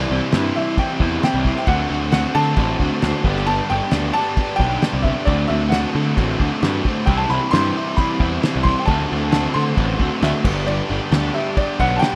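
Carefree and upbeat, this short indie rock cut moves in a straight 4/4 over a C, D7 and G progression. A clear upright piano carries the melody in a high register, its woody tone and audible action noise trailed by tape echo. Two overdriven guitars play riffs together, one biting and washed in lush chorus, the other a raw garage tone set back in the background. Up front, a fuzz-soaked picked electric bass sounds round and punchy, and it stops just before the end at 12.0 seconds. A cloth-damped, thuddy drum kit joins at 0.3 seconds with a fat snare, tight kick and dark, rolled-off cymbals. Light reverb and a faint mains hum give the whole thing the rough feel of a home demo.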